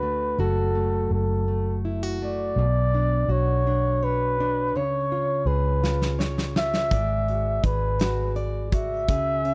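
Dry and close, this recording has the intimate feel of a 1970s studio session, with little reverb around the players. It is a melancholic, aching pop ballad in 6/8, moving slowly at 55 BPM in dotted quarters, taken from a longer piece. A breathy flugelhorn carries the melody up front in a whispered, jazz-style solo, its soft attack and vibrato giving the line a mellow, confiding tone. Beneath it, a fingerpicked, plugged-in jumbo steel-string acoustic guitar supplies full-bodied accompaniment, complete with audible finger squeak, while a vintage foam-muted electric bass sits up front with a dark, round, amped voice. The harmony moves through F#m, Bmadd9, C# and G#m7b5, and at 5.8 seconds a huge arena drum kit arrives with a fill of punchy kick, medium-tuned snare and hi-hat, its natural big-room sound adding weight.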